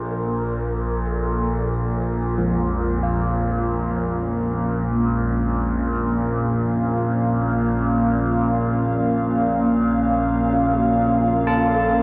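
Cavernous, warm and drenched in a huge 7.1-second reverb, this ominous dark ambient drone in free time and Bb harmonic minor, cut from a longer piece, rests on an up-front sawtooth drone of moving, resonant overtones with chorus and phaser, ringed by a pure quartz singing bowl in the background, while a breathy, hollow bamboo shakuhachi fades in at 0.1 seconds, clangorous bronze church bells ring out arpeggios from 2.4 seconds, and a deep, detuned, wave-folded analog pad holds sustained chords from 3.6 seconds.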